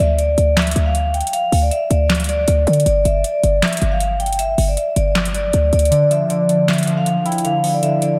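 Soaked in lush hall reverb, this eerie, menacing half-time hip hop and trap piece at 157 BPM in D minor sets a ringing, airy vibraphone melody with tape echo over a booming analog drum machine of metallic hats, tonal snare and handclaps and a punchy, sine-based 808-style bass that stops at 5.9 seconds, when the kick falls silent and detuned, nostalgic lo-fi synth keys with chorus and phaser enter as accompaniment.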